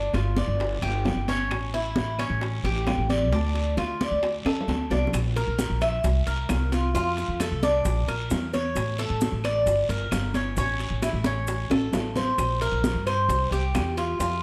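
This is a danceable, nostalgic stretch of Cuban son and guajira at 132 BPM in a straight 4/4, cut from a longer piece. Up front, a picked Cuban tres plays arpeggios on its metallic double strings, some octave-doubled, while a thumpy, dark upright bass with gut strings plays pizzicato beneath it. High-tuned congas ring close and dry under soft hands, joined in the background by round, low-tuned bongos with a compressed, saturated edge and ringing metal-shell timbales. A raspy, distant guiro, very quiet vintage, band-limited claves and, from 5.1 seconds, grainy, mellow maracas fill out the percussion. The harmony moves from G5 through A7 to Dm, breaks off at 5.1 seconds, then runs C7, F, Bb, A, Gm and back to A before closing on Bbsus2 and C, with drum fills near 4.5 and 11.7 seconds, all set in a moderate large-studio reverb.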